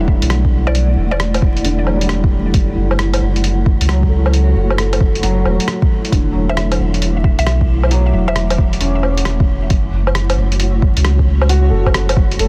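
A woody upright piano with audible action noise opens this melancholic, rainy future garage excerpt, its accompaniment pumping against the sidechain while a filter sweep and tape echo blur its edges, over a cloudy granular pad and a deep, round dub sub bass that sits up front. At 134 BPM in 4/4 with a swung sixteenth-note feel in E dorian, the chords move from Em11 to F#m7, E9sus4 and back to F#m7. An overdriven electronic kick, re-recorded in a small room, plays alongside a muffled, sampler-style kit of hi-hat, rim click and woodblock, with softly clipped snare. The pad drifts with detuned unison voices, a moving notch and its own reverb, pumping with the sidechain like the bass. A mallet-like FM pluck with chorus and tape echo surfaces in the background at 0.7 seconds and again at 6.5 seconds. The dense, heavily limited master carries light reverb and a layer of vinyl crackle.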